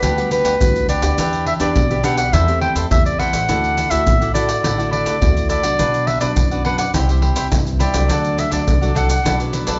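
A joyful, sunny blend of samba and choro opens with the whole band at once at 104 BPM in a straight 4/4. A clear, present clarinet sits up front, carrying the solo melody in a classical style before it drops out at 9.4 seconds. Beneath it, a crisp picked cavaquinho and a fingerpicked classical nylon-string guitar fill out the harmony, moving through Gmaj7/D, Em7, C6/E and Dadd9 before settling on Bm, C, D and Bm7. An upright bass, plucked pizzicato on steel strings, gives a woody low end, while maracas, pandeiro and a deep surdo sit up front with hard hands and a compressed, saturated punch. The group sounds like it is playing live in one room with moderate large-studio reverb and a rolled-off top end, and this fragment is cut from a longer piece.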